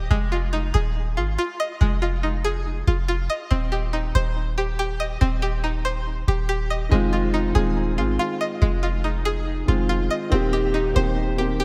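A twangy, string-like resonator pluck with chorus and analog delay spins arpeggios over a boomy, sine-toned 808-style bass in this brooding, dark half-time hip hop cut at 141 BPM in F minor, where a mellow, boxy grand piano enters at 6.9 s and the Fm7 and Eb6 chords drift through a dreamy, reverb-soaked hall.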